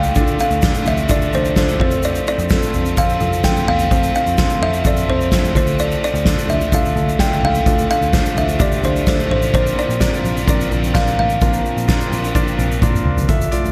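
A straight 4/4 pulse at 128 BPM drives this uplifting, warm piano-driven pop excerpt, with a soft-mallet drum kit sitting up front, its boomy kick and medium-tuned snare joined by a grainy, bright egg shaker and a round, punchy muted electric bass. A clear concert grand piano with deep bass and short sustain carries the accompaniment through Dm, F and Bbadd9, under a fingerpicked, full-bodied steel-string acoustic guitar riff kept very quiet in the mix. A woody, ringing kalimba plays the melody with a slapback echo it shares with the piano, all in light small-room reverb, until the kalimba stops at 13.0 s as a drum fill runs from 12.8 to 13.3 s.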